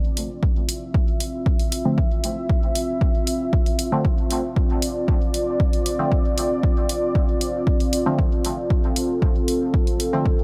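A punchy, up-front electronic kick drives a straight pulse from 0.4 seconds, with a layered electronic hi-hat ticking along above it in this hypnotic, nocturnal dub techno excerpt. A dark, detuned analog pad holds a single sustained chord up front, its slow attack, chorus and sidechain pumping making it breathe with the beat. From 1.9 seconds, a deep, mellow chord stab adds soft, decaying filter plucks soaked in chorus, phaser and dub echo, all set in a digital ambience.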